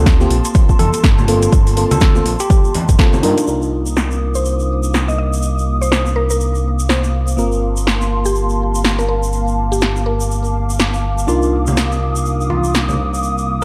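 Warm and smooth, this deep house cut moves at 123 BPM in C minor with a swung groove, as an up-front overdriven electronic kick thumps only until 3.1 s beneath a punchy-snared, metallic-hatted drum kit, grainy tube shaker and distant ringing congas, while a gliding sawtooth synth bass with portamento anchors airy, breathy pad chords and soft, round FM electric piano stabs, all pumping under sidechain, before a bell-like tine electric piano melody and, from 4.4 s, a woody mallet-like synth pluck with 12-bit grit sing over a filter sweep on an analog pad that begins at 3.5 s in a dark production with light reverb.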